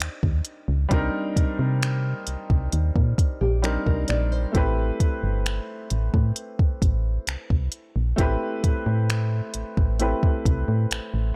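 A punchy, round FM bass sits up front with a fast, decaying attack, anchoring this late-night contemporary R&B excerpt alongside a smooth electronic drum kit of soft kick, hi-hat and finger snaps. A clear, slightly worn grand piano carries the accompaniment over Cm9 and Am9 chords. Between 3.4 and 4.8 seconds a dark nylon-string guitar adds thumb-plucked arpeggios with audible finger squeak, deepening the longing mood of the dusky production.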